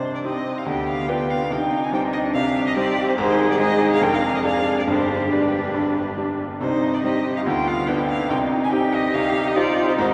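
A muted violin, a concert grand piano and a muted viola begin together in this urgent, stormy excerpt from a quick classical-period movement for piano quartet in C minor, moving at 142 BPM in a straight 4/4. The violin carries the melody up front, its veiled, con sordino tone shaded with vibrato, while the piano sits equally forward with a clear, natural sound and deep bass beneath the harmony. The viola, also muted and dark, adds accompaniment from the background with only light vibrato. At 0.7 seconds a muted cello enters with a second line, distant and soft in attack, sliding between notes with portamento. The harmony circles around C minor through diminished chords, an Ab and a G before returning home, and a long cathedral reverb places the whole quartet further back in a resonant, echoing space.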